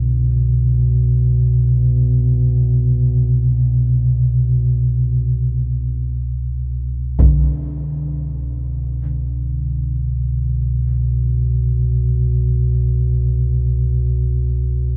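A deep, ominous drone rumbles up front from the opening and sustains through 15.0 seconds, its slow-attack tone carried in its own reverb while bronze gamelan-type bossed gongs play beating arpeggios through a diffuse ambient delay, sitting quietly yet mid-forward in free time. This dark, cavernous stretch of dark ambient drone, cut from a longer piece, rests on a Csus2 sonority. At 7.2 seconds a taiko ensemble strikes briefly with heavy sticks, its low-pass-filtered hit close and up front as if in a small room.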